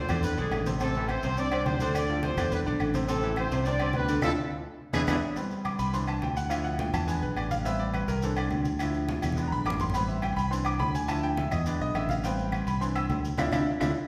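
Danceable and fiery, this salsa excerpt in A minor runs at 210 BPM with a smooth, lightly vibrato-touched horn section carrying the melody until 5.2 seconds, after which a brilliant, slightly worn concert grand takes over for a solo at 5.4 seconds over a warm fingered electric bass, ringing agogo bells and timbales, woody claves in the background, grainy maracas and very quiet, damped low-tuned congas, all set in a reverberant recital hall with band accents and drum fills punctuating the cycling Am7, Dmadd9 and E7 changes.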